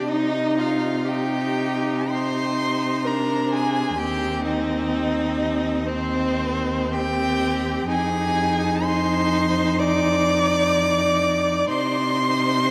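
A string quartet begins together in this slow, melancholic and elegiac classical excerpt in C minor at 63 BPM, played with rubato as the harmony moves from C minor through F minor seventh and back home. The first violin carries the melody, warm and expressive with portamento and a smooth top, while the second violin's rich, even line sounds distant, the viola gives clear, focused accompaniment, and an up-front cello with soft attack and its own portamento anchors the bass. All four players bow with vibrato, and a wet cathedral reverb places them in a vast, echoing space.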